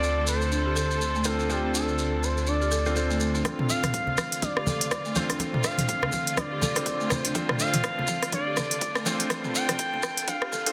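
Afro house at 123 BPM in D minor with a driving, swung feel, this excerpt opens on a Dm7 with an expressive, gliding sawtooth lead carrying the melody through chorus and delay over distant, bowed symphonic strings, felt-muted upright piano stabs with audible action noise, grainy maracas and a dark, rumbling detuned saw bass that stops at 3.4 s, while a woody folk marimba arpeggiates in the background from 0.5 s, and then congas, a deep house kit with smooth hats and a background electronic kick arrive around 3.4 s as filter sweeps on the marimba and piano drive a build-up, all set in a lush hall reverb with a dense, heavily limited master.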